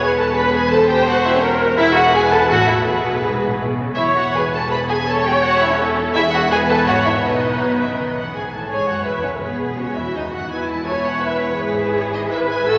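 Quick, cheerful classical-period movement for string orchestra in E major at 166 BPM in 3/4, cut from a longer piece and spirited throughout its 12.8 seconds, with a new section arriving at 8.3 seconds. A focused, distant first violin section carries the melody with vibrato over a darker, intimate second violin line with soft attack, while an expressive viola section sits up front with the accompaniment. A smooth, even cello section and a lush double bass section with portamento anchor the bass, all bathed in a wet church reverb.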